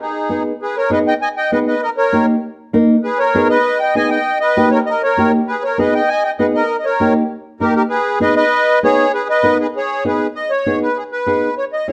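A reedy, sweet accordion with a light tremolo tuning opens this fiery, passionate Latin piece, carrying the melody up front in G# harmonic minor at a brisk 197 BPM. A dark, woody nylon-string guitar enters at 0.3 seconds, thumb-plucked and full-bodied, accompanying as the harmony swings between G#m and D#7. Both play together in a live stone room with a wet reverb, and the music moves into a new section at 10.4 seconds before this fragment cuts off.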